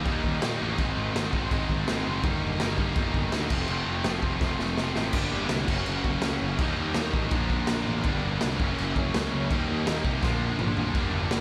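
Punk rock with an energetic, rebellious drive, cut from a longer piece: three picked electric guitars play riffs (a sludgy overdriven one and a tight distorted one with slapback echo, both in the background, and a very quiet, double-tracked high-gain one), over a growly fuzz bass and an up-front, gritty garage drum kit with a punchy kick, dark cymbals and a pumping room sound, which plays fills at 4.4 and 10.2 seconds, all in a big arena sound with lush hall reverb.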